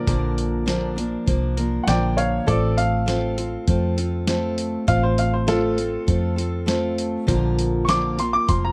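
Heartfelt and nostalgic, this short honky-tonk and classic country excerpt moves at a straight 100 BPM in 4/4, resting in Bb major and shifting from Bb to F/A at 2.5 seconds before returning to Bb at 7.3 seconds. An upright piano carries the featured line throughout, its clear, woody tone placed intimately close enough that the action noise of the keys can be heard, with notes that decay quickly. Beneath it, a picked steel-string acoustic guitar sits up front with a full-bodied jumbo sound, and small finger squeaks come through as it picks out the accompaniment. A vintage muted electric bass, played with the fingers, adds a dark, round low end from a foam-muted, amped tone. The drum kit has a dusty, sampler-style character, compressed and gritty with overdrive, pairing a thumpy kick with a fat snare and hi-hat. The dry, closely miked sound keeps every detail present and immediate.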